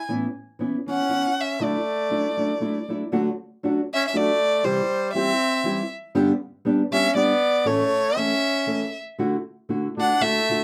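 Close, detailed microphones and a light reverb give this short mariachi fragment an intimate, present sound, cut from a longer piece in D major. The tempo sits at 119 BPM in a lilting 3/4 with a gentle swing, and the mood is romantic and proud. A single bowed violin carries the melody up front with a soft attack, expressive vibrato and portamento, while a mellow, punchy trumpet with a vintage, classical-style tone plays a lower second line beneath it. A small, thumb-plucked nylon-string guitar, also up front, provides the acoustic accompaniment, complete with audible finger squeak. The harmony moves from a rootless Aadd9 through Dadd9, then D, C, G and A before settling back on Dadd9 at 9.2 seconds, with the phrase restarting at 3.1 seconds.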